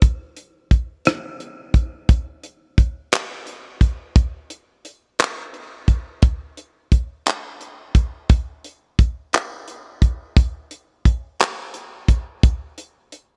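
R&B in a slow 6/8 at 58 BPM with a straight feel, this short drum-only cut from a longer piece carries a yearning, sultry mood. A damped 70s drum kit plays throughout, from 0.0 to 13.3 seconds, built from kick drum, rim click, hi-hat and handclaps. The kit sounds acoustic and dry, with a tight kick sitting up front in the mix. The room adds little reverb, and the whole recording has the worn, warbling character of old cassette tape, with a warbly pitch drift. The opening passage lasts only about two seconds before a new section begins at 2.1 seconds and runs to the end.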